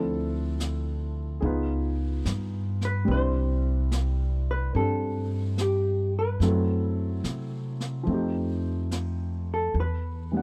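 Swung eighths at 72 BPM in 4/4 carry this tender, intimate jazz ballad, a short cut from a longer piece, with a natural-sounding brush kit of brushed snare, snare and hi-hat slipping in at 0.6 s. A dark, clean, fingered hollow-body electric guitar sings the melody over a warm baby grand piano's accompaniment and a woody pizzicato upright bass on steel strings, all three up front, as the chords move from Dm7 through C#9, Cadd9 and F#m7b5 to F9 and Em. The sound is dry and close, in the manner of a small-room 1970s studio recording.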